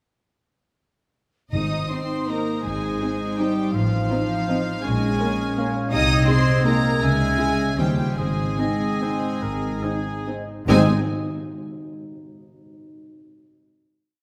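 A wet scoring-stage reverb surrounds this short, complete orchestral ballroom waltz in 3/4, which moves with an elegant, festive rubato. A warm violin section carries the floating, pure melody up close, while a richer, more distant second violin section and the cellos double the tune at the octave. A fingerpicked concert harp rings out in broad broken chords, dark double basses mark the bass on the beats, and very quiet viola and mellow French horn sections, entering at 1.9 seconds, fill in after-beat and sustained chords. An airy flute and a softly vibrato oboe hold sustained chords in the distance, a clear clarinet does the same in the background, and the oboe also answers at phrase ends. Timpani single strokes with hard mallets open the piece at 1.5 seconds, and after the music slows from 7.6 seconds, they return for the final chord at 10.7 seconds.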